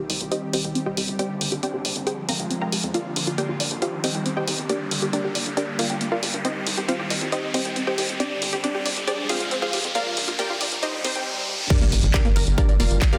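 A straight 4/4 pulse from an up-front analog drum machine with crash, handclaps, hi-hat and tambourine drives this soaring uplifting trance build-up, where a detuned sawtooth unison pluck melody and a mellow sequenced arpeggio synth carry filter sweeps over a tight sequencer bass and a thick, bright pad, those four parts pumping to the sidechain in a lush hall, while an electronic riser and swell lead to the drop at 11.7 seconds, which brings an impact and a punchy, overdriven, layered electronic kick.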